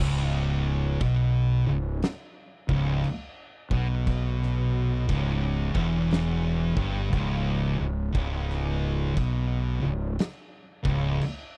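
A pair of thick fuzz guitars opens this short cut from a longer stoner and doom metal piece, both playing a distorted, picked riff low in the register, with one of them sitting up front. A growly fuzz bass, fingered and overdriven with a bright, direct-amped edge, enters alongside them at the start and anchors the low end. At 1.0 s an oversized, low-tuned acoustic drum kit joins with a punchy kick, a fat snare and crash cymbal, its sound dark, saturated and gritty with a rolled-off top. The tempo is a crawling 59 BPM in 4/4 with a swung eighth-note feel, and the whole passage rests on C# minor for a sludgy, hypnotic mood. The recording is dry and close in a 1970s studio style, with little reverb, keeping the guitars, bass and drums heavy and immediate until the riff ends at 11.2 s.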